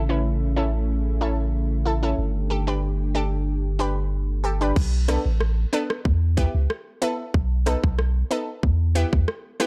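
A hypnotic, bouncy dancehall groove in a dark production, this short cut from a longer piece opens on a lush, thick unison pad holding sustained chords through a chorus and low-pass filter, its detuned, warbling tone ending at 4.7 seconds. Beneath it a punchy sub bass with a deep, sine-like body and a pitch-drop attack sits up front, running until 9.3 seconds. An analog pluck carries the accompaniment throughout, its round, detuned sawtooth and square-wave tone laced with a noise layer, a filter sweep and a moving notch, and it pumps against a sidechain under chorus and a low-pass filter. At 4.8 seconds an electronic island pop drum kit arrives up front, its tight kick, metallic hi-hats, rim clicks and crash cymbal pushed through overdrive. The harmony moves from A to Gsus2 in the opening half, then cycles through Bm7, Em and B7 once the drums join, all set in a digital ambience.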